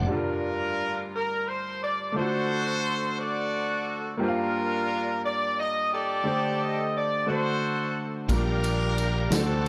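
A fervent, solemn slow gospel passage in G minor at 59 BPM in 6/8 opens on an intimate baby grand piano with audible action noise and a momentary touch of organ and bass, before a tight, distant-sounding horn section takes the melody at 0.1 seconds with light vibrato over Gm7 and D7 harmony, and at 8.3 seconds a punchy fingered electric bass, a shouting, lightly overdriven tonewheel organ on a slow rotary speaker, a big-room swinging big-band drum kit and a jingly background tambourine join as the chords land on Bb6, all within a moderate large studio reverb.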